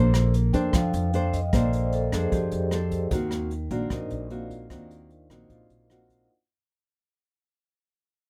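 A straight, relaxed 4/4 bossa nova groove at 151 BPM rides on brushed hi-hat, rim clicks and a boomy kick, while a woody, dark pizzicato upright bass sits up front beside a fingerpicked classical nylon-string guitar, moving from Bbmaj9 to Ebm6 at 3.1 seconds. From 0.5 seconds a vibraphone played with medium mallets takes a smooth, ringing solo colored by slow motor vibrato. The breezy fragment is cut from a longer piece, closely miked with little reverb, and fades out across its full length.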